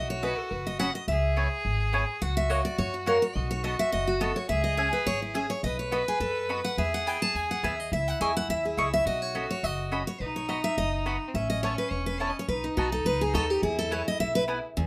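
A bright, full-bodied picked acoustic guitar leads this driving, joyful bluegrass piece at 210 BPM with a swung eighth-note feel, taking the solo up front over a woody, thumpy pizzicato upright bass and a clear bowed fiddle with light vibrato on a second line, all three sounding from the start. A round, double-strung mandolin adds picked stabs from 0.2 seconds. The harmony moves through chords such as Badd9, C#m7, B7 and E under light reverb, and the fragment is cut from a longer piece.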